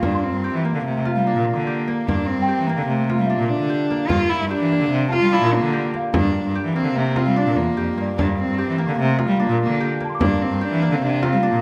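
A restless 5/4 pulse at 148 BPM drives this pensive piece of contemporary chamber music in G dorian, played straight and resting on a single Gm7 harmony throughout the roughly 11-second excerpt cut from a longer work. Two bowed cellos sit up front: one carries the melody with a dark, woody tone played sul tasto with vibrato, while the other anchors the low register with rich, expressive bass lines marked by a soft attack, vibrato and portamento. A concert harp fingerpicks ringing arpeggios. A deep frame drum, played with soft hands, supplies the percussion. In the background, a small celesta adds a delicate, bell-like shimmer from soft felt hammers, its sweet, airy texture ending at 11.3 seconds. The ensemble sits in a moderate recital-hall reverb that lends the close, intimate playing a sense of space.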